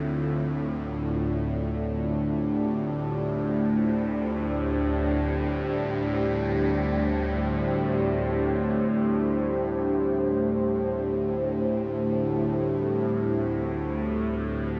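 In free time, this dark ambient drone in D minor, tuned to A4 = 439 Hz, hangs in an ominous, desolate stillness for its 14.8 seconds, cut from a longer piece. A bowed-like drone sits low, between D2 and A2, and is placed up front: string-like and tense, its detuned sawtooth unison carries a noise layer, vibrato and a bright edge, with slow attack, long release, built-in reverb and a phaser. Above it, a deep, moody pad holds sustained chords between C4 and C5, full-bodied and dark, blending sawtooth and sine voices with a sub octave, detuning, chorus and its own built-in reverb. Both parts sound together from the first moment to the last, settling on a D7sus4 at 0.1 seconds. A huge, wet reverb with a 9.3-second decay wraps the whole in a shadowy, warm production.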